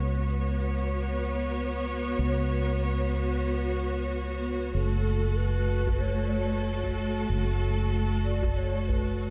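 Soaked in lush hall reverb, this dreamy, mystical stretch of organic downtempo sets rich, bowed symphonic strings holding sustained chords up front beside a round, dark fretless electric bass with a subtle chorus, while a tape-warm electronic shaker sits quietly in the background. At 4.7 seconds, as the harmony settles from a suspended chord onto its minor home, a hollow, airy bass bansuri enters with a soft attack, gentle vibrato and a trailing delay. A tight, cracking djembe played with soft hands joins close and dry at 5.9 seconds, adding a hand-drum pulse to the swinging, unhurried groove.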